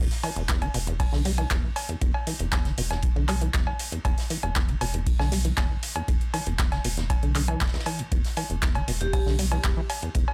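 A rubbery, resonant sawtooth acid bass riff drives this hypnotic, trippy acid house excerpt in E minor at 118 BPM, its filter-plucked notes snapping in fast and decaying darkly through tube saturation and a digital delay over an E5 harmony. Beneath it, a round sine sub bass holds the low end with sidechain pumping, while an analog kick with a tape-warm thump arrives at 0.5 s to anchor the straight 4/4 groove. An up-front electro drum machine supplies cowbell, handclaps and metallic hats, and a quieter vintage kit adds hi-hat, ride and a medium-tuned snare with dark cymbals, its small-room sound high-pass filtered and its top rolled off. Near the end, at 9.0 s, a bright, ringing vibraphone struck with hard mallets sounds a single G4 through tape echo. The mix stays dry, keeping the focus on the throbbing low end and percussion.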